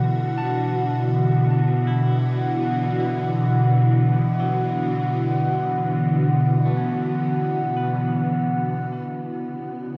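Up front, an evolving wavetable pad holds sustained chords from B2 to F#4, its detuned, morphing tone shimmering through ensemble chorus, phaser and built-in reverb as the harmony moves from Bm to A at 9.1 seconds. This serene, luminous ambient passage in free time, cut from a longer piece, places a twangy, clean electric guitar in the background playing arpeggios through delay and fading out until 9.1 seconds, while a glassy glass harmonica adds an ethereal F#5 texture over the same span. A huge reverb with an 8.7-second tail and the warble of worn cassette tape, its pitch drifting, wash over the whole recording.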